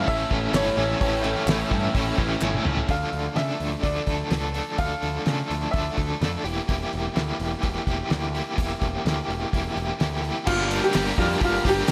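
A biting, up-front overdriven guitar with tremolo drives this moody, bittersweet indie rock excerpt from start to finish over growling overdriven bass and a dry, thuddy cloth-damped drum kit, joined by a brilliant, woody upright piano melody with slapback echo, a crunchy chorused second guitar, a very quiet sawtooth analog pad and crisp group handclaps; the second guitar, pad and handclaps drop out by 2.9 seconds, the piano falls silent at 6.4 seconds, and all four return around 10.5 seconds.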